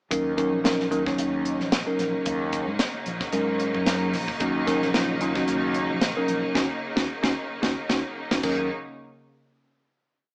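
A swung 16th-note funk groove at 112 BPM in 4/4 drives this short, nocturnal electric jazz fusion piece in Eb minor, where a tight, dry drum kit with bright cymbals and a high-tuned snare backs syncopated stabs and fills at 3.6 and 7.1 seconds from an up-front, bell-like tine electric piano, a syncopated riff on an amped fretless bass, and a lush, bowed string pad over a single Ebm7 chord, all sounding like a band playing live in one room through a small speaker with moderate reverb, before a band accent and a drum fill lead into a final hit at 8.7 seconds.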